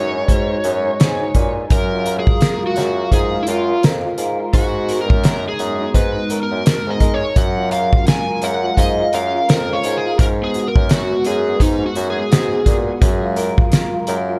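A dark, lightly reverberant production frames this laid-back, nostalgic bedroom-pop snippet, where an overdriven slide guitar carries the melody through analog chorus and digital delay over a slightly broken-up electric guitar from a small old amp with warbly pitch drift, a hollow, flute-like pad sitting in the background, a clear bassoon with light vibrato holding the bass line, and an up-front indie drum kit with a fat snare and punchy kick swinging the groove from 0.3 seconds.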